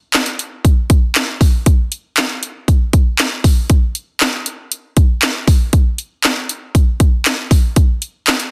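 A layered electronic house drum kit sits up front from 0.1 s to the end of this short, upbeat and carefree pop cut in a straight 118 BPM 4/4, its punchy kick, cracking snare, warm hi-hats and handclaps framed by light reverb and digital ambience within a dense, heavily limited modern master.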